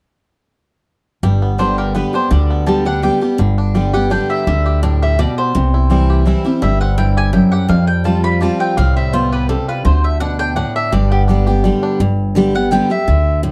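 At 1.2 s a twangy, percussive banjo played with fingerpicks takes the melody over a full-bodied picked dreadnought acoustic guitar and a thumpy, woody pizzicato upright bass, both up front, with a bright double-string mandolin joining the melody at 1.6 s in this lively, rustic bluegrass excerpt in G major and 3/4 at 167 BPM, where light reverb frames a dark, warm production as the chords move from G through Gadd9, C and Fadd9 to D5 and back to G, and the banjo stops at 12.0 s.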